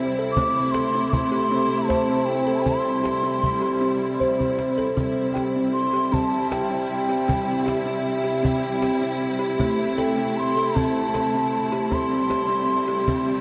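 The recording is soaked in a huge, lingering ambient reverb with a dreamy cassette-tape haze, giving this fragment of a longer piece a gentle, floating mood. It is meditative world music built around tuned percussion, moving at a slow 52 BPM in a straight 6/8 and staying within a C major pentatonic colour, with the harmony resting on C before shifting to Am at 9.6 seconds and returning to C at 11.9 seconds. Up front, a woody kalimba rings out thumb-plucked arpeggios from the very start, while a distant, smooth string ensemble sustains rich bowed chords beneath it. A close, snappy cajon with snares enters at 0.2 seconds under soft hands and plays a short drum fill at 4.2 seconds that leads into the second half. Above it all, an airy bamboo bansuri carries the melody from 0.3 seconds, mellow and expressive with tongued notes and vibrato, its line trailed by tape echo.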